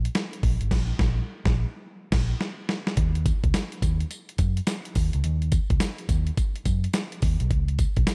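A dark, round electric bass opens this short, punchy new jack swing cut in Eb minor, moving between Ab1 and Gb2 at 106 BPM with a 16th-note swing. A gritty, compressed sampler-style drum kit sits up front with a thumpy kick, medium-tuned snare, hi-hat, tambourine and crash, and the band hits an accent from 0.7 seconds while the drums play a fill from 1.8 seconds into the second section at 3.0 seconds. The dry sound keeps the slick groove tight and immediate.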